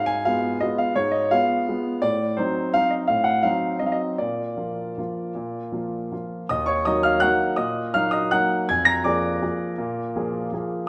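A rubato waltz in three, this wistful, bittersweet classical excerpt features a solo concert grand piano, warm with deep bass and an open, up-front tone, ranging from low to high across its register within a wet, large studio reverb, moving through diminished harmonies before settling into a new section at 6.5 seconds.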